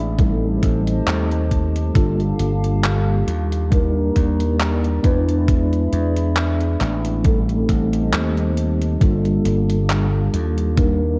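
Vaporwave in G minor at a slow 68 BPM, this short excerpt from a longer piece drifts with a nostalgic, hazy mood and a lightly swung sixteenth-note feel. A mellow tine electric piano sits up front carrying the accompaniment, its clean tone coloured by lush chorus and analog delay, while a warbly, tape-like pad holds sustained chords beneath it with slow attack, long release, chorus, its own reverb and a gritty 12-bit sampler edge. A bright, punchy slap bass drives the low end prominently. From 0.2 s a thumpy, sampler-style electronic kick and a detuned 8-bit drum machine supplying handclaps and hi-hat play together, both tape-warm and re-recorded in a large room, and the kick drops out briefly between 8.1 and 9.0 s. The harmony moves through Am7b5, Gm9, Ebmaj7 and E7 before circling back, all wrapped in a dark production with light digital ambience.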